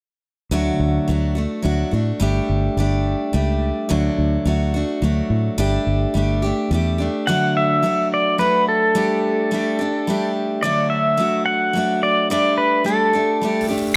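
This rock cut, taken from a longer piece, opens at 0.5 seconds with a picked steel-string acoustic guitar, full-bodied and up front, playing a jangly, hopeful accompaniment alongside a fingered electric bass. The bass has a dark, round, foam-muted tone, direct and amped, and drops out at 7.1 seconds. The music moves at 107 BPM in a straight 3/4, alternating between D and Gsus2 in D major throughout. At 7.3 seconds a pedal steel guitar takes the melody, bright, clean and twangy, played with fingerpicks and slide, compressed and shaped with volume swells, sitting slightly louder than the acoustic guitar. A small room reverb gives the whole a small-room setting.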